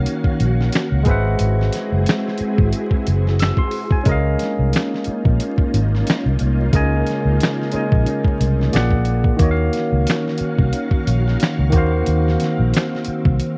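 A lightly swung sixteenth-note groove in 4/4 carries this sultry, late-night neo-soul and R&B excerpt, driven up front by a gritty, compressed sampler-style soul kit with thumpy kick, fat snare, hi-hat and finger snaps, and by a dark, round, foam-muted fingered electric bass that drops out at 13.4 seconds for a break. A barky tine electric piano, lightly overdriven through a combo amp, plays bright accompaniment over Ebm9, Ab7alt, Db69 and Bb7b13 changes, while a silky string machine holds soft, warbling chords with ensemble chorus beneath. The dry, close 1970s-style studio sound carries vinyl crackle and little reverb.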